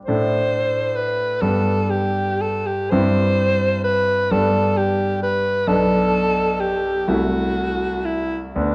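A polished concert grand opens at 0.0 s, its deep bass and short sustain setting a serene G major accompaniment, and an alto saxophone joins at 0.1 s with a clear, classical-style melody of vibrato and a smooth top, both placed up front. The romantic duo moves at a slow 42 BPM in 6/8 with uneven, rubato beats, drifting from G through C and B minor seventh to A minor. A recital hall's 1.8-second reverb and a dark, warm production surround this short fragment of a longer piece.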